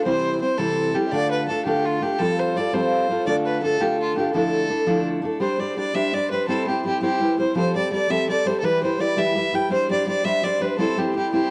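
A rich, smooth fiddle carries the melody up front, bowed by a single player with light vibrato in an even line. Beneath it, a very quiet bamboo pan flute adds a breathy, hollow second line with soft attacks, audible chiff and its own vibrato, sitting in the same register as the fiddle. A full-bodied, fingerpicked steel-string dreadnought guitar also sits up front, supplying the accompaniment. This wild, driving Celtic jig in 6/8 moves at 112 BPM in D dorian, cycling through chords such as C, Dm, Fadd9 and Gsus4, with a new section beginning at 5.4 seconds. The sound is a home cassette recording in a small, reverberant room, cut from a longer piece and running 11.5 seconds.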